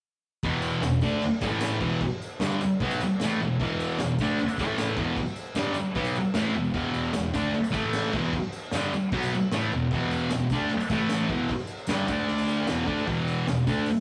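Garage rock at 152 BPM, raw and swaggering, built on a thick, bright, double-tracked fuzz guitar riff up front cycling through E5, A5 and a brief D5, over a crunchy breakbeat drum kit with a high-tuned snare and tight kick sitting gritty and dark in the background, a jingly tambourine tucked close behind, all from 0.4 s in this rough rehearsal-room recording with wet studio reverb.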